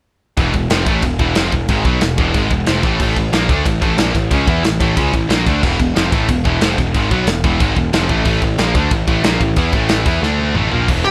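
A dry, rough home-demo mix carries this relentless, aggressive heavy metal cut at 183 BPM in E phrygian dominant, with three distorted rhythm guitars riffing in the background (one overdriven and double-tracked, one high-gain, one tight) over a growly, fuzz-drenched picked bass and a punchy, polished acoustic drum kit with bright cymbals, both up front. The riff alternates between E and A5, touching D5 as a drum fill arrives at 10.2 s, and at 11.0 s a high-gain lead guitar cuts in on a single G#4 just as the clip ends.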